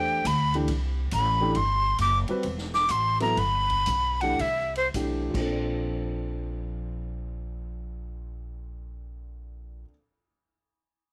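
Spiritual and open, this short modal jazz excerpt swings in 4/4 and opens with a breathy, bright flute solo carrying the melody with vibrato and a crisp, chiffy attack, while the time slows from 1.6 seconds. Beneath it, a warm grand piano accompanies, a woody, growly pizzicato upright bass sits up front, and a natural-sounding big-band kit with a punchy kick and ride, hi-hat, snare and crash stays low in the mix until about 5.4 seconds. After the flute drops out at 4.9 seconds, piano and bass carry on under light reverb as the harmony moves from Cmaj9 to Bbmaj9, and once the kit stops they finish the excerpt alone.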